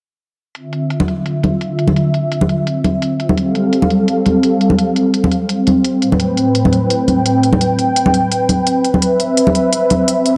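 A warm analog pad opens the excerpt at 0.6 seconds, its detuned sawtooth chords sustained with a soft attack, smoothed by chorus and placed up front, while a filter sweep moves across it. This is melancholic, lush liquid drum and bass in D dorian at 170 BPM in 4/4, with a 54% swing on the sixteenths. Electronic hi-hats enter alongside the pad, crisp and layered yet tape-softened under a low-pass filter and a small room reverb, sitting low in the mix. Congas arrive at 1.0 seconds, ringing and acoustic, heard close and dry. The harmony drifts from Dm9 through G9sus4 and Am9 to Cmaj7 at 9.0 seconds, and a moderate hall reverb with a long tail gives the recording its lush, spacious sound.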